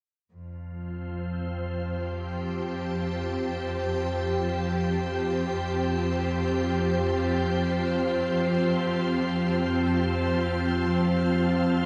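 Ambient and serene, this short cut from a longer piece drifts in free time over a single sustained F chord. A clear studio cello section holds a low bass note from 0.3 seconds, smooth and even with gentle vibrato, while a soft organ-like additive pad enters at 0.7 seconds with pure, full-bodied, slightly detuned sustained chords, bright and up front with ensemble chorus and its own reverb. The whole recording sits in a wet shimmer reverb with a long 7.2-second decay and the soft grain of cassette tape.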